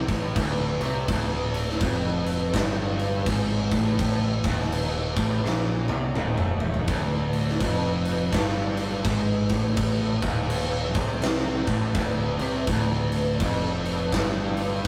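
A rough rehearsal-room recording with tube saturation and modest booth ambience frames this brooding, sludgy stoner and doom metal excerpt at 83 BPM in D minor with a swung feel, where a double-tracked fuzz guitar grinds out a low, distorted riff up front over a growling, overdriven electric bass and a big acoustic rock kit with a fat snare, tight kick, crash cymbal and toms that breaks into a drum fill from 5.4 to 6.9 seconds.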